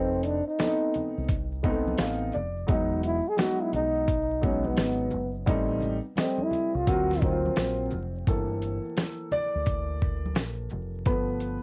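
A breathy, whispered trombone with light vibrato, scooped notes and tape echo carries the melody until 7.9 s in this mellow, cool jazz-hop clip at 86 BPM with a swung feel, over a dark, long-sustaining grand piano that takes a solo from 8.3 s, a round, punchy dub bass, a gritty, compressed sampler-style drum kit with a thumpy kick, and ringing congas and egg shaker set close and dry in the background, all wrapped in cassette tape and vinyl crackle.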